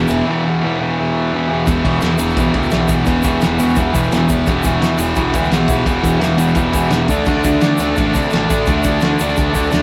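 A fast, straight four-beat pulse drives this gritty, raw garage rock fragment, cut from a longer piece and played live by a small band in one room with moderate reverb. A double-tracked fuzz guitar sits up front with a bright, compressed, distorted riff, while an overdriven electric bass growls underneath from further back. The cloth-damped drum kit sounds thuddy and muffled, with a fat snare, tight kick, and dark crash and ride cymbals, all saturated and rolled off at the top for a lo-fi, small-room character. Behind them, a vintage combo organ holds buzzy sustained chords and a grainy tube shaker adds close, dry percussion. The harmony rests on E minor before moving to D at 7.1 seconds.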